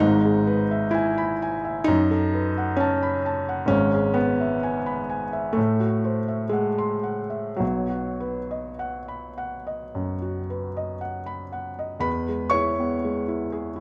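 A romantic classical nocturne for solo piano, tender and dreamy, unfolds in a slow, rubato 4/4 on a felt-muted upright piano whose soft, mellow, intimate tone sits up front, spanning from G#1 to C#6. Close, detailed microphones capture the instrument within a moderate recital hall reverb, as gentle harmonies drift through the opening section before settling onto a new passage at 12.1 seconds. This brief portion is cut from a longer piece.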